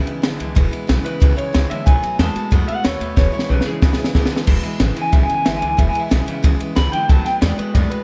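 A twangy electric guitar through a small old amp carries the melody from start to finish, its clean, slightly broken-up solo lit by spring reverb and analog delay. This is a retro, rollicking rockabilly excerpt in a straight four, cut from a longer piece and moving between E and B7. Up front, a compact cocktail drum kit with a punchy kick, a high-tuned snare, ride and crash cymbals has a dark, rolled-off top, and it plays a fill between 3.2 and 4.5 seconds. A woody, thumpy upright bass with gut strings sits low, while a second picked electric guitar with the same bright bite plays a riff in the lower register. A full-bodied dreadnought acoustic with fresh strings fills in the accompaniment, and a light reverb gives the whole a small-room feel.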